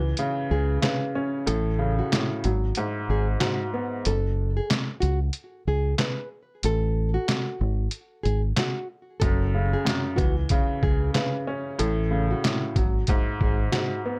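A gritty, dark boom-bap hip-hop excerpt with light reverb, cut from a longer piece, moving at 93 BPM in 4/4 with a swung sixteenth feel in C# minor. A compressed, pitched-down sampler-style drum kit sits up front with a thumpy kick, medium-tuned snare, handclaps and hi-hat, alongside a round, punchy dub bass played with the fingers, direct and amped, holding the low end. A thumb-plucked nylon-string guitar carries the classical-tinged melody in a narrow upper range, its dark tone trailed by delay. A woody, slightly detuned upright piano with short sustain plays accompaniment, dropping out at 4.1 seconds and returning at 9.2 seconds. The harmony moves from C#m through A and G#m7 into F#m, and after a chordless stretch it cycles back toward C#m and ends on a bare G#7.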